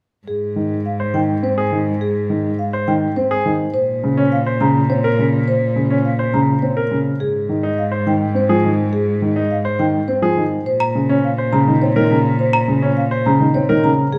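A soft-malleted marimba carries the melody in this hypnotic, bright excerpt of minimalist classical pattern music, its rosewood tone round and airy over a rich, close cello bass at 104 BPM in 3/4, set in Ab major. A dark, boxy baby grand piano with audible action noise supplies intimate accompaniment while a brilliant, polished concert grand spins arpeggios as the harmony alternates between Ab and Bbmadd9. A dry, sharp trough xylophone adds a brief arpeggio figure from 10.8 to 12.7 seconds, and the whole is set in a wet recital hall reverb.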